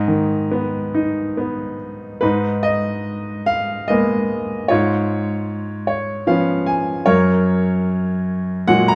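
A bright, brilliant grand piano sits up front as the only voice in this short classical fragment cut from a longer piece, its open tone and short sustain carrying a lyrical solo line across a range from F#2 to A#5. The mood is dark and reflective, and the playing moves in an unhurried 3/4 with a loose, rubato feel. The harmony drifts from G#m to G#madd9, then through C#7/G# before settling on F#add9, and the opening idea is stated and then taken up again. A brief piano fill from 5.5 to 7.1 seconds adds a moment of ornament before the final chord. Moderate studio reverb surrounds the instrument, and the overall production leans dark and warm.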